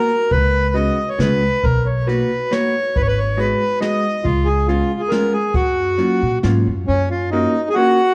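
A 3/4 waltz at 138 BPM sways with a rubato feel in this short cut from a longer musette piece in F# major, whirling and nostalgic in mood. A reedy, dark accordion carries the melody up front, while a clean, picked hollow-body electric guitar supplies the accompaniment beneath it. An upright bass enters at 0.3 seconds with a woody, thumpy pizzicato tone from gut strings, joined by a brushed jazz kit of hi-hat, boomy kick and medium-tuned snare that sits in the background and stops at 6.5 seconds. The harmony moves from C#7sus4 through C#7, Bmaj7 and G#m7, back to C#7, and settles on F#maj7, with the opening section beginning again at 6.9 seconds. A moderate recital-hall reverb surrounds the ensemble, and the whole recording carries the worn, warbling pitch drift of old cassette tape.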